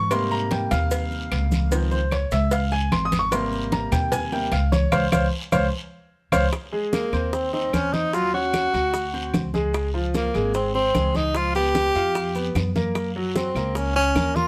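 A clear, intimate baby grand piano opens this lively, danceable Afro-Cuban jazz passage, cut from a longer piece, carrying the spotlight with long sustain and audible action noise over a pizzicato upright bass that sits up front with a warm, woody, steel-string tone. Percussion fills in almost at once: low-tuned, thick-skinned congas played with soft hands, tight high-tuned cowbell and bongos struck with hard hands, and woody claves, all close and dry, with the bongos, cowbell and claves placed in the background. A raspy guiro in a small room and grainy, mellow maracas add texture further back. The band punches a shared accent from 4.9 seconds, and a drum fill at 6.3 seconds leads into a new section where the harmony moves from lush major sevenths through minor and dominant colours. At 6.9 seconds a breathy tenor saxophone takes the melody up front, its whispered, soft-attack jazz tone shaded with vibrato. 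The close, detailed sound carries only a light touch of reverb.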